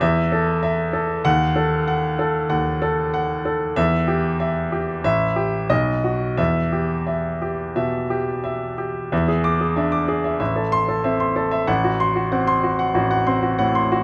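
A classical virtuoso piano study in E minor, this passionate, agitated passage moves in a rubato 4/4 at roughly 87-97 BPM, with a solo grand piano spanning A1 to D6. The piano's brilliant, open tone sits up front, captured by close, detailed microphones with light reverb. The harmony passes through a diminished chord back to E minor, and at 9.1 s a new section turns through E7 toward A minor before this cut from a longer piece ends at 14.0 s.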